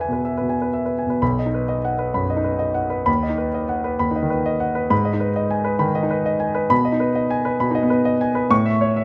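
A clear concert grand piano plays alone from the start, its deep bass and short sustain sitting up front in this sparkling, heroic virtuoso study in B major, taken from a longer classical piece. At 132 BPM in 4/4 with a rubato feel, the harmony moves from E to B at 1.2 seconds, then through B/D#, G#m and G#m/B before touching A at 8.5 seconds. Close, detailed microphones give the instrument a natural tone, framed by a moderate recital hall reverb.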